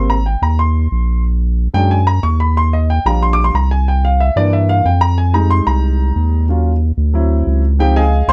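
A fiery, driving Afro-Cuban jazz passage, cut from a longer piece, opens with a warm, intimate concert grand piano soloing up front, its action noise audible, over a thick, saturated sub bass throughout its 8.3 seconds, the close, dry sound carrying a rich chord sequence from Abmaj7 through Ebm9 and D9 to Dbmaj9.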